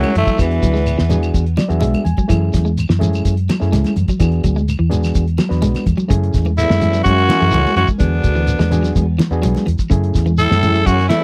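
Afrobeat at 126 BPM in F# minor, this intense, funky passage from a longer piece sits in a dry, close 1970s-style studio sound, with the harmony alternating between E7 and F#m9. A cloth-damped, thuddy drum kit with a fat snare and tight kick lays down a straight 4/4 beneath an up-front, round, foam-muted vintage electric bass. Congas with a thin, bright skin and woody, distant claves sit in the background, joined by a grainy, close shekere, and the claves drop out at 5.9 seconds. An overdriven, reedy electric piano runs through a combo amp and plays a short fill at 1.3 seconds. Meanwhile, an electric guitar at the edge of break-up plays picked arpeggios through analog chorus. A raspy, gritty tenor saxophone carries the melody up front, backed by a punchy alto saxophone with tape echo and a vintage trombone section. The horns sound briefly at the opening and return at 6.6 seconds.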